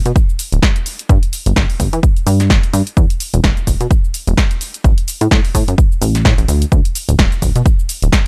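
Energetic and soulful, this short piano house cut in E minor runs at 128 BPM with a 16th-note swing, built on a funky, wave-folded analog bass whose plucky filtered notes pump against the sidechain, a tape-warm, up-front electronic kick, and an analog drum machine adding hi-hat, shaker and a punchy snare, all in a dry, close mix.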